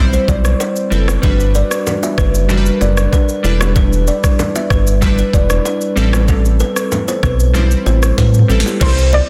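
Afrobeats at 95 BPM with a smooth, mellow feel, moving through Cmaj7, Gmaj7, Em7 and Am7 as glassy digital keys with chorus and a deep, detuned analog bass sitting up front support a woody, ringing kalimba riff trailed by digital delay. An electronic afro-pop kit with a knocking kick and a sharp, softly clipped snare drives the groove, adding a drum fill at 8.2 seconds, while vintage, band-limited bongos and congas ring in the background. A soft, round pluck with chorus enters at 8.8 seconds just before this cut from a longer piece ends, all set in a digital ambience with a dense, heavily limited modern master.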